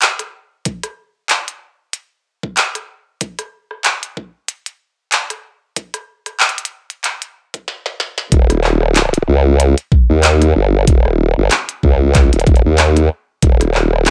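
A wobbling, overdriven sawtooth-and-sine bass with a formant filter and chorus crashes in at the drop at 8.3 seconds to crown this funky, playful glitch hop excerpt with a light swing, after a build-up in which an up-front glitchy kit of handclaps, clicky hats, rim clicks and a tiny snare, re-recorded in a small room, plays alongside a knocking, tape-warm electronic kick and closes with a drum fill from 7.7 seconds, all in a dry mix.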